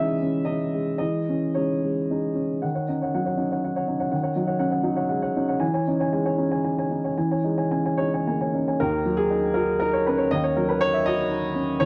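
A rubato pulse in 3/4, drifting between 109 and 122 BPM, carries this melancholic, intimate neoclassical minimalist piece, cut from a longer work and tuned to A4 = 436 Hz. A lone upright piano, mellow and woody with long sustain and placed up front, spans D#2 to G#5 and moves between C#madd9/E and D#m7, with changes at 2.6, 5.6 and 8.8 seconds. Light reverb and a dark, warm production wrap the 11.9-second passage in a close, intimate glow.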